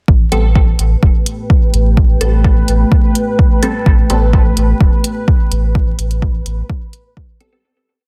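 Hazy and deep, this short dub techno piece runs at 127 BPM in 4/4 with a straight feel, resting on an A minor 9 chord throughout. A punchy, overdriven electronic kick drives a four-on-the-floor pulse up front from 0.1 seconds, joined by a closed electronic hi-hat that carries programmed hats and a backbeat with a small-room character. A round sine sub bass with a fast attack sits prominently beneath, playing a dub-style line that pumps against the kick, while a moody analog pad of detuned sawtooth and triangle layers with a sub octave fades in slowly and holds sustained chords under chorus and sidechain pumping. Sparse, muted chord stabs built from detuned, wave-folded waveforms pluck out one shape moved in parallel, coloured by phaser and dub echo, and drop away at 4.3 seconds before a brief return near the close. Within the pad's register, a mellow, resonant texture bubbles through random filter steps on a held B4, softened by chorus and its own reverb, as the dense, heavily limited master with vinyl crackle fades out from 5.1 seconds.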